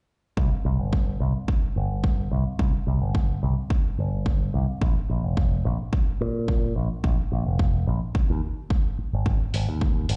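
A straight groove drives this sleek, groovy nu-disco clip cut from a longer piece, with a punchy, up-front electronic kick running from 0.4 s to 9.9 s under a bright, picked electric bass pushed through an envelope filter, sounding direct and amped. Metallic, low-pass-filtered electronic hi-hats slip in only at 9.5 s, set lower in the mix, while the kick and hats carry a small room reverb. The whole track sounds as if played over a big sound system in a bare room, with a large studio reverb and a dulled top end.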